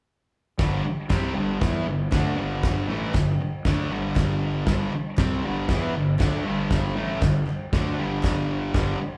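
A double-tracked fuzz guitar sits up front, its bright, picked riff driving this raw, swaggering garage rock excerpt at 118 BPM in a straight 4/4 over a G5 chord. A cloth-damped drum kit thuds close by with a fat snare, tight kick and dark cymbals, while a growly overdriven fingered bass sits in the background. From 1.1 seconds, crisp group handclaps sound faint and distant, all heard as a band playing live in one room with a large studio reverb.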